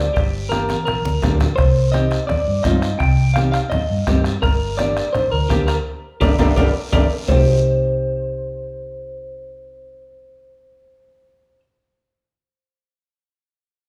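Danceable and driving, this cumbia excerpt in C minor moves at 168 BPM, with a twangy, up-front clean electric guitar carrying the melody through spring reverb over a boxy, fingerpicked nylon-string guitar and a dark, round, punchy hollow-body electric bass. Bombo, low-tuned congas, a raspy guiro and distant, ringing metal-shell timbales drive the groove until 7.4 s, with drum fills around 0.7 s and 6.4 s, a band accent from 5.9 s, and a nylon-string guitar fill leading into the next section at 7.3 s. The band plays live in one room, set in a large studio reverb.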